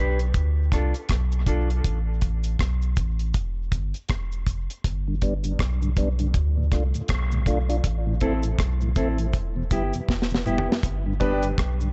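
A soft, round sub bass and a dark, clean electric guitar with dub echo open this heavy, spacious dub reggae excerpt at 80 BPM in D dorian. A dry acoustic drum kit with a tight kick and a faint, close cabasa join almost at once over a swung 16th feel and chords moving from Dm through Asus2, Em and G. A mellow tonewheel organ with chorus vibrato and slow rotary speaker enters at 5.1 seconds, the guitar returns, and after a drum fill near the end of the break, brilliant, polished grand piano stabs arrive at 11.2 seconds, set in a small room.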